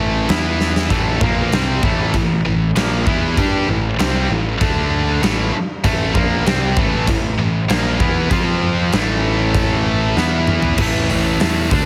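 A heavily compressed, radio-ready sound with light reverb frames this short hard rock cut, taken from a longer piece, in A minor at 97 BPM in a straight 4/4 with a heavy, menacing mood. Up front, a double-tracked, high-gain electric guitar drives the riff with bright, distorted picking, while a fuzz-laden picked electric bass, direct and amped, overdriven and punchy, anchors the low end from the first moment. A huge arena drum kit enters at 0.3 seconds with a hall-like acoustic character, bright cymbals, a medium-tuned snare and a punchy kick, and drum fills mark its start and the close of the main section. The harmony moves from E5 to Am, then through D5, F5 and A5, before a brief final section arrives at 10.8 seconds on A5.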